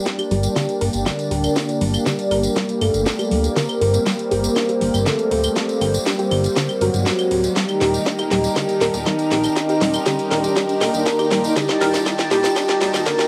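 A straight 4/4 pulse at 120 BPM drives this hypnotic melodic techno passage in G minor, cut from a longer piece and built as one continuous build-up with a drum fill running throughout. A punchy electronic kick sits in the background beneath a house drum kit of cracking snare, metallic hats, claves and toms, with a jingly, close and dry tambourine tucked in quietly. A fat, saturated analog bass enters at 0.3 s with sidechain pumping, while a tight, driving sequenced synth plays arpeggios through chorus, phaser and analog delay, its filter sweeping across the passage. Over this, a mellow analog lead with vibrato and a sub octave carries the melody through tape echo and its own filter sweep, framed by a lush, airy unison pad holding sustained chords and a deep, moody ambient pad. A very quiet riser joins at 2.3 s, and the harmony moves from Gm to Eb at 7.6 s, all within a moderate studio reverb and a home-cassette character that lends the lead, pad and arpeggio a tape-worn grain.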